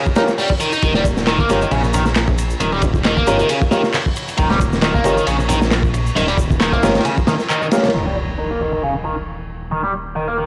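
A swung, crunchy breakbeat with a punchy kick and dark cymbals drives this funky, playful breaks excerpt, joined by tape-warmed electronic shaker and handclaps and very quiet, bright congas, all riding over a single dominant-seventh vamp. A biting, overdriven guitar riff with phaser and tape echo sits up front beside present grand piano stabs, while a deep, rumbling detuned saw bass enters at 0.8 seconds, and the whole home-cassette recording carries a spring-reverb glow. After a band accent at 7.5 seconds the beat drops out at 7.9 seconds, leaving the guitar under a filter sweep with the bass, as an electronic impact rings out until 9.7 seconds.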